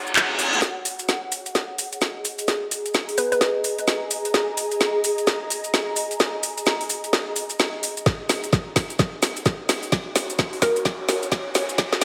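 Swung sixteenths at 129 BPM in 4/4 drive this swaggering, aggressive bass house excerpt, a build-up centred on F#. It opens with a reverse cymbal at 0.0 seconds, and a fleeting, distant brush kit with a fat snare and ride cymbal sits very quietly in the background. The up-front garage drum kit carries a long drum fill of handclaps, metallic hats and a woody snare, overdriven and dressed in studio reverb, while grainy maracas rustle behind it. Over everything hangs an ethereal, airy pad, full-bodied and mellow, with ensemble chorus, phaser and sidechain pumping, and a hollow, bouncy square pluck with chorus and digital delay pops in briefly around 3.2 seconds and again at 10.6 seconds. A knocking, overdriven electronic kick lands up front at 8.1 seconds as a riser climbs toward the end, all set in a small, moderately reverberant digital room.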